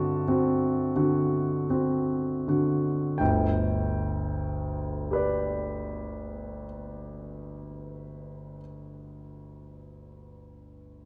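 A romantic classical nocturne for solo piano, this brief passage cut from a longer piece carries a tender, nostalgic mood in G major. The pulse is very slow, about 25-32 BPM counted in dotted quarters within a 9/8 metre, and the playing moves with a free, rubato feel. The concert grand sounds clear and natural, placed up front with a deep bass, ranging from G1 to A5 across its 11.1 seconds. The opening phrase slows down as it rests on a D7 over a G bass, then settles onto a plain G major chord at 3.2 seconds, where a new section begins and runs to 8.9 seconds. A moderate reverb, like that of a scoring stage, surrounds the instrument, and the overall production leans dark and warm.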